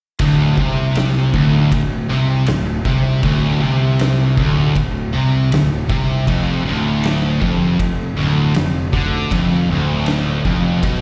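From 0.2 seconds, a brooding, ominous stoner and doom metal riff at 79 BPM in 4/4 starts at once on all parts: a bright, double-tracked sludgy guitar with overdrive and slapback echo, two dark picked fuzz guitars (one very quiet, the other distorted and in the background), a round, overdriven fingered bass, and an oversized low-tuned drum kit with a boomy kick, fat snare, gritty saturation and ride cymbal, moving from Csus2/D to Dm6 at 6.3 seconds, all heard as a live gig through the venue's PA with recital hall reverb in this cut from a longer piece.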